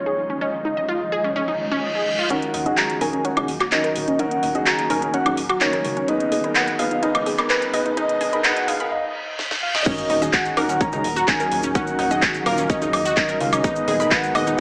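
Heard through a high-pass filtered, small-speaker sound with moderate digital room reverb, this emotional, dreamy progressive house passage, cut from a longer piece, opens with a round, octave-layered synth lead carrying the melody with chorus and dub echo, over a shimmering, ethereal ambient pad, mellow vintage baby grand piano stabs, and lush detuned unison pluck arpeggios under a filter sweep, all breathing with sidechain pumping. A reverse cymbal, riser and sub drop, arriving at 1.5 seconds, sit low in the mix. At 2.3 seconds the build-up begins as an up-front house kit with cracking snare, metallic hats, handclaps, woodblock and crash cymbals enters, joined moments later by a funky, tube-saturated analog bass in the background. A short break and drum fill lead to the drop at 9.9 seconds, where a punchy, tape-warm electronic kick and a grainy, close cabasa join the groove.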